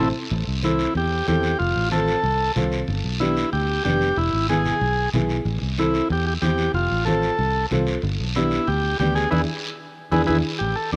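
A cassette-recorded home take with light reverb and a small-room feel carries this fiery, danceable cumbia in A minor at 186 BPM, where a buzzy, up-front combo organ leads the melody over a woody, boxy upright piano and a round, dark fingered electric bass. After an opening drum fill, thick-skinned, low-tuned congas and a raspy guiro join at 0.3 seconds, and the music moves through Am, F, G and E to a band accent on E7 at 9.3 seconds in a short section cut from a longer piece.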